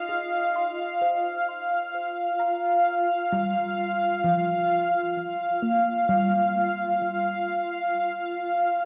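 A cloudy, blurred granular pad sits up front from the start, holding a sustained rootless Dbmaj7 chord high in the register with a slow attack and long release. Alongside it, a soft, round pluck, detuned and wave-folded with chorus and delay, fades in with gentle arpeggios over a broad range until 8.0 s. It is a luminous, serene ambient fragment in Db lydian at 65 BPM, bathed in a long concert hall reverb with a dark production, and the pad lingers alone until 8.8 s.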